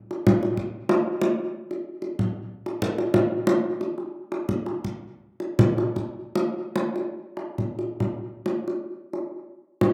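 A lone kendang opens this short gamelan passage at 0.1 seconds, its deep, acoustic drum tones struck with soft hands and sitting up front in the mix. The mood is hypnotic and shimmering, moving in a straight 4/4 at a tempo that ranges between 66 and 94 BPM. The drum has a distant, large-room character, touched by light reverb, while the outdoor recording itself carries little sense of a surrounding space. Around 8.9 seconds the passage shifts into a brief closing section, and the kendang plays on until 9.9 seconds as this cut from a longer piece comes to an end.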